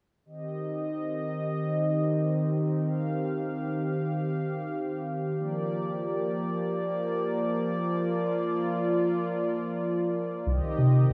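A smooth, detuned sawtooth analog pad with chorus holds sustained chords from 0.3 s, drifting in free time in C minor from Cm to Bb6 and back to Cm, set in a lush hall reverb. This synthwave fragment, cut from a longer piece, feels driving and cinematic. At 10.5 s a round, dark, nasal analog bass enters up front with a filter pluck and a fast attack to underpin the final chord.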